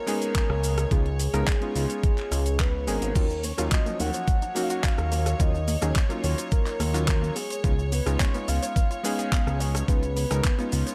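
A straight 4/4 nu-disco groove, groovy and feel-good, rides on an up-front, knocking electronic kick and an overdriven pop drum kit of hi-hat, handclaps, rim click, shaker and crash, with a fat, detuned analog bass under a clangy, chorused electric grand piano and an earthy background violin section that both pump with sidechain, while a round, dark octave-layered synth lead sings the melody through chorus and analog delay, and from 3.2 seconds a very quiet, punchy unison pluck arpeggiates beside a close cabasa sitting in the background, the whole short cut from a longer piece set in a digital ambience.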